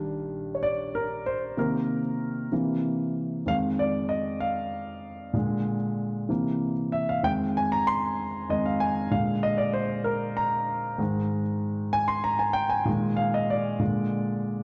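A dark, warm production places the grand piano up front within a moderate scoring-stage reverb, giving this short gospel passage a reverent, soulful glow. The piano plays alone throughout, at a slow 64 BPM in 6/8 with a straight feel, ranging from F2 up to C6. Its harmony moves from Ebmaj7 through Cm7, Fm7 and Bb7 to an Abmaj9, then settles on a Bb7sus4 resolving to Bb7 near 13.8 seconds.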